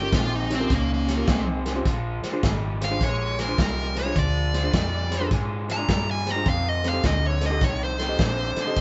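A dark, overdriven lead guitar takes an up-front solo across this laid-back, swaggering electric blues shuffle excerpt, moving over Eb7, Bb7 and then F7 at 6.5 seconds. Beneath it, a barky, reedy electric piano with light overdrive comps through its built-in speakers, a raw, lo-fi garage guitar picks out the riff, and a round, foam-muted fingered bass holds the low end. A gritty, saturated breakbeat kit with a tight kick and medium-tuned snare joins at 0.1 seconds, and the whole band sounds captured live in one room with moderate reverb and a rolled-off top.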